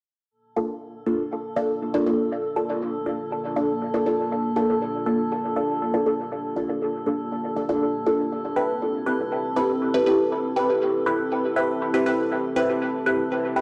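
A straight 4/4 pulse at 120 BPM anchors this cavernous, meditative techno passage in G dorian, cut from a longer piece, with the harmony moving from Gm7 to Am7. The filtered dub chord stab arrives first at 0.6 s and sits up front: muted, detuned sawtooth hits with a fast attack and decaying tails, shaped by a filter sweep, a moving notch, phaser, cassette tape colour and dub echo. A metallic, inharmonic FM drone enters at 1.2 s on a single high note, its eerie, nasal tone swelling in slowly and hanging in chorus and its own reverb. The dark analog pad joins at 1.6 s with sustained chords, blending square, sawtooth and triangle waves with a sub octave under chorus and phaser for a moody, low bed. A moderate echo chamber gives the mix a hollow depth, while the dry, gritty hardware sound and transformer saturation add a rough edge.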